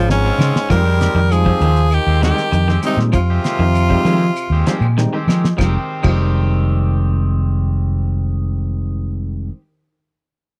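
A driving, defiant afrobeat excerpt opens on a drum fill from a cloth-damped, thuddy kit as a raspy tenor saxophone carries the melody over a brilliant trombone second line with tape echo, clean arpeggios from a semi-hollow electric guitar and an up-front, round fingered bass, while an overdriven, barky tine electric piano, twangy guitar stabs at the edge of break-up with spring reverb, and faint, woody claves fill out the dry, close 1970s-style sound; the horns drop out at 4.9 seconds during an electric piano fill, the drums, claves and semi-hollow guitar stop at 6.2 seconds, and the bass, electric piano and stab guitar carry on to the end at 9.6 seconds.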